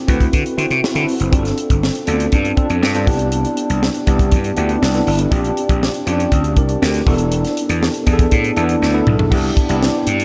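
A straight 4/4 groove at 120 BPM drives this bittersweet, urban slice of polished 1980s jazz-funk pop, cut from a longer piece, with a tight, dry funk kit up front, its bright cymbals, high-tuned snare and tight kick rolling into a fill at 8.8 seconds. A gritty, growly slap bass, amped and overdriven, holds the low end, while a worn, slightly out-of-tune tine electric piano, lightly driven and chorused as if through built-in speakers, comps through D7, G7sus4, Cmaj7, Bb6 and E7sus4 before landing back on Cmaj7 at 9.3 seconds. A cathedral reverb with a long tail soaks the mix, giving it a dreamy haze.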